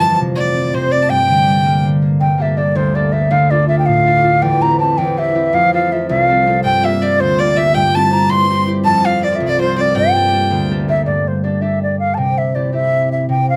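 Spirited and driving, this excerpt of a Celtic folk jig in 6/8 opens partway through a longer piece. A baroque flute carries the melody throughout, its woody, airy tone coloured by vibrato, crisp attacks and rolled-off highs, played expressively and up front. A single bowed fiddle adds a second line in the same upper register, clear and biting with a nasal, earthy edge; it sounds briefly at the start, falls silent at 1.8 seconds, and returns from 6.6 to 10.7 seconds. Underneath, a concert harp supplies a fingerpicked accompaniment reaching down into the low register, its acoustic, ringing sound also up front. A moderate small-room reverb gives the trio an intimate setting as the harmony moves among F, G minor and D minor colours before arriving on a C chord.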